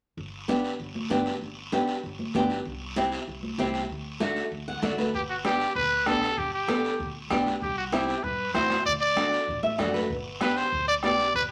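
Sunny and joyful, this cumbia moves at a brisk 194 BPM in straight 4/4 in G major, cycling through G, C and D. A fingerpicked flamenco guitar sits up front with an audible finger squeak, short nylon-string guitar fills arrive at 4.5 s and 9.5 s, and a woody, thumpy pizzicato upright bass anchors the low end. Close congas ring in the background, and a raspy guiro scrapes nearby. At 5.1 s a gritty, growling trumpet takes the solo melody up front with light vibrato and a brilliant pop-style tone, joined by a soft-beater bombo with a vintage, band-limited sound tucked behind. A wet studio reverb gives the ensemble a sense of space.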